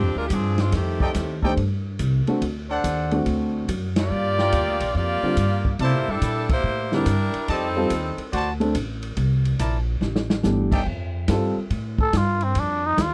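Swinging and brassy, this big band swing excerpt sets an edgy saxophone section with slapback echo and clear trumpet stabs over woody pizzicato upright bass, an intimate grand piano and a dark, punchy jazz drum kit in a dry, close studio sound, with band accents at 3.9 and 6.4 seconds before a raspy, growling cup-muted trumpet solo takes over at 10.9 seconds.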